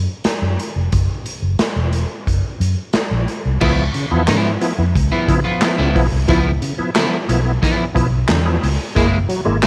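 A straight 4/4 funk groove struts in with a round, foam-muted fingered electric bass at 0.0 seconds, and a gritty, saturated garage drum kit joins at 0.2 seconds with a punchy kick, medium-tuned snare, hi-hat, handclaps and crash cymbal set up front in a bright stone room. At 3.6 seconds an up-front, slightly broken-up electric guitar with analog chorus takes on accompaniment, while a reedy tonewheel organ with audible key click adds stabs through chorus vibrato, a slow rotary speaker and slapback echo, over chords moving from Gb7(no3) to Db7#9 and Gb9. The playful passage sits in a small room and is cut from a longer piece.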